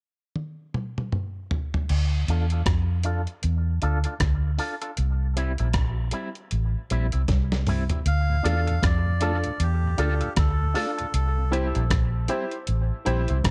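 A swung, unhurried 78 BPM dub reggae groove in D minor opens with a gritty, tape-warm drum fill from a sampler-style kit at 0.4 seconds. It is joined at 1.9 seconds by a dark, round, foam-muted electric bass and at 2.3 seconds by a twangy envelope-filtered guitar soaked in tremolo and dub echo as a filter sweep unfolds. Then a reedy, breathy melodica, a soft flute-like tonewheel organ on slow rotary speaker, and worn, slightly detuned upright piano stabs drift in around 8.1 seconds, giving this meditative, deep excerpt its hazy ambience.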